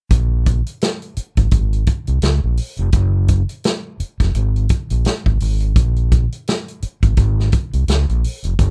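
Lush 1970s-style soul with a cinematic, silky mood, carried by a lightly swung sixteenth-note feel in 4/4. An overdriven fingered electric bass sits up front, its amped, punchy tone holding the low register between F1 and Db2. A vintage acoustic drum kit of hi-hat, kick and snare plays alongside it from 0.1 to 8.7 seconds, with a medium-tuned snare, a punchy kick and a rolled-off top that gives the kit a natural, small-room character. The two parts share the foreground in a dry, rough home-demo mix with little reverb, lending the groove an intimate, close-up quality. The passage is cut from a longer piece.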